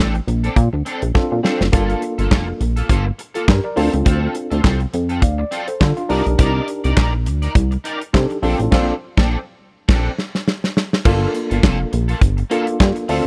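Early-eighties boogie funk with a slick, late-night mood, this short section cut from a longer piece moves on a swung sixteenth-note feel in 4/4. The acoustic studio drum kit sits up front with a punchy kick, a medium-tuned snare, handclaps, hi-hat and crash cymbals that ring bright, with drum fills at 1.1 s and 9.9 s. A retro chorused synth bass blends pulse-wave and sawtooth tones with pulse-width modulation and a fast-attack filter pluck, glossy yet mellow and also up front in the mix. A worn, slightly out-of-tune tine electric piano, lightly overdriven through its built-in speakers, carries the Bbmaj9, Gm9, Dm7 and Cm9 chords. A twangy, picked electric guitar riff at the edge of break-up, thickened by ensemble chorus, sits lower in the balance. Near the end the band hits accents while the electric piano adds a fill, and at 11.1 s the music turns to a new section on Gm9, all captured in a dry, close 1970s-style studio sound with small-room ambience.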